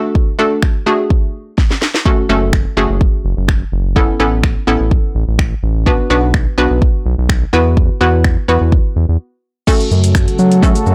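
Energetic, driving dance-pop at 126 BPM in F# minor, this short excerpt opens with a hollow, bouncy square-wave pluck pumping against the sidechain, joined at 0.2 seconds by an up-front house kit of punchy kick, cracking soft-clipped snare, metallic hats, snaps and shaker, then at 2.3 seconds by a round, deep analog bass with transformer saturation, moving through D, F#m, Aadd9, Bm and Esus2 before a break at 9.2 seconds gives way to a bright, sweeping resonant pad on F#m at 9.7 seconds, all in a dry, blown-out, overdriven mix.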